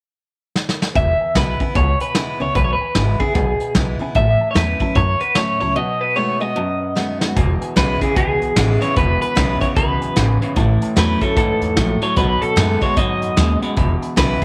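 A swinging shuffle drives this rollicking, rowdy rockabilly clip, cut from a longer piece. A brushed vintage drum kit opens with a short fill at 0.6 seconds, its punchy kick and medium-tuned snare sitting up front in a pumping small room with a rolled-off top. From 1.0 seconds a thumpy, gut-strung upright bass, a full-bodied picked dreadnought acoustic guitar and a twangy, slightly broken-up electric guitar riff in the low register join in. On top, a second small-amp electric guitar carries the bright lead melody up front, shimmering with tremolo and tape echo. A dark, boxy upright piano with audible action noise and long sustain murmurs in the background. The tune runs through a simple E, A and B7 progression, pauses for a break that closes with another fill, and launches its second section at 7.4 seconds, all wrapped in light small-room reverb.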